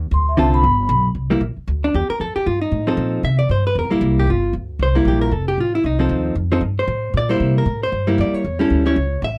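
A mellow vibraphone, struck with soft mallets and shimmering with motor vibrato and slapback echo, opens this playful small-group swing and bop excerpt with a brief ringing solo from 0.1 to 1.1 seconds. Underneath, a woody pizzicato upright bass runs from the start at a brisk 230 BPM swing in C mixolydian, and a dark, clean, compressed hollow-body electric guitar enters at 0.4 seconds to comp through a cycle of dominant chords such as C7, F7 and A7. The sound is dry, close and warm, in the manner of a 1970s studio with light reverb, with all three instruments up front.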